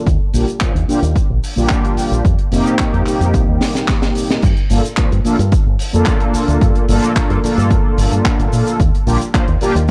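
Groovy and sensual, this nu-disco cut rides mellow, detuned synth brass that sits up front with chorus, analog delay and sidechain pumping over chords moving from Ebmaj7 through F7sus4 to Gm7. A round, dark fingered electric bass with an envelope filter and tube saturation runs alongside a punchy, tape-toned electronic kick, while a tight funk kit with a high-tuned snare, hi-hat, shaker, handclaps and crash sits further back. A drum fill at 3.6 seconds leads into the drop at 4.4 seconds, all captured in a dry, gritty recording touched with studio reverb.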